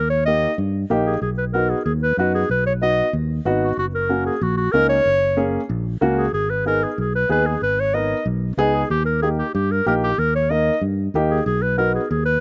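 A warm, up-front clarinet carries the melody in this fiery, driving Latin excerpt at 188 BPM in G# minor, joined by a round, amped fingered electric bass and a dark, woody upright piano with long sustain that comes in at 0.3 seconds, all heard dry and close as if played outdoors over chords moving from D# through B and F# to G# minor.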